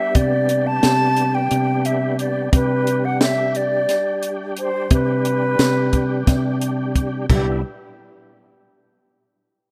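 Intricate and bright, this progressive instrumental piece moves in 7/8 at 176 BPM in eighths with a straight feel, set in C major and cut from a longer work. An airy wooden flute carries the melody from G4 to A5, its straight, tongued tone captured close and up front with expressive phrasing. Beneath it, an overdriven tonewheel organ supplies thick, gritty accompaniment between G3 and G4, with percussive second-harmonic attacks, chorus vibrato and a fast rotary speaker. A compact cocktail drum kit sits dry and forward, pairing dark cymbals and a high-tuned snare with a punchy kick and toms. Fingered electric bass adds a round, dark, amped line from C2 to C3. The rough home demo mix carries light studio reverb, and the harmony rests on G/C before shifting to Cmaj7 at 7.3 seconds.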